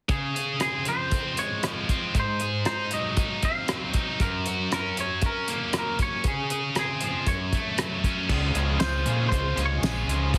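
From 0.1 seconds, a twangy, clean electric guitar melody with chorus, plate reverb and delay rides over a bright, scooped high-gain guitar riff and a cloth-damped, thuddy drum kit with dark cymbals, a fat snare, a tight kick, rim clicks and tambourine in this upbeat, jangly indie rock excerpt at 117 BPM in Db major, moving through Dbmaj7, Ab7, Gb and Gbm chords, before an overdriven, amped fingered bass enters at 8.3 seconds and a chorus-soaked overdriven guitar riff joins at 8.6 seconds, all set in a heavily compressed, radio-like sound with light reverb.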